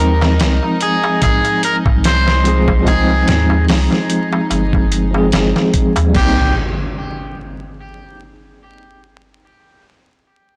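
Trip hop with a hypnotic, smoky mood, cut from a longer piece and carried by a twangy, slightly broken-up electric guitar melody with sampler grit and tape echo, over a bell-like tine electric piano with tremolo and echo, dark reedy strings in the background and a round sine sub bass. A gritty, compressed sampler-style drum kit with a thumpy kick and fat snare sits up front, while a crisp metal-shell darbuka played with hard hands stays behind it, the chords moving from Abmaj13 to Cm7 at 6.2 seconds. The drums and darbuka drop out just after 6 seconds, and an electronic impact enters at 6.4 seconds and rings until 9.4 seconds, all wrapped in a blown-out, overdriven recording with vinyl crackle and light digital reverb.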